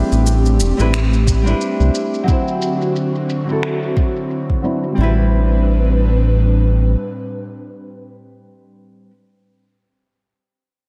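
A lightly swung 4/4 groove of layered electronic shaker and finger snaps, joined at 1.3 s by a soft, tape-tinged electronic kick, carries this smooth, relaxed sunset chillout fragment, where a boxy, fingerpicked flamenco guitar with finger squeak runs through a filter sweep until 5.0 s and trails diffuse ambient delay, an airy, breathy pad with chorus and vintage 12-bit sampler grit holds detuned chords, and a round, deep analog bass sits up front, the dreamy mix soaked in lush hall reverb as the harmony moves from Am11 to D7 and back.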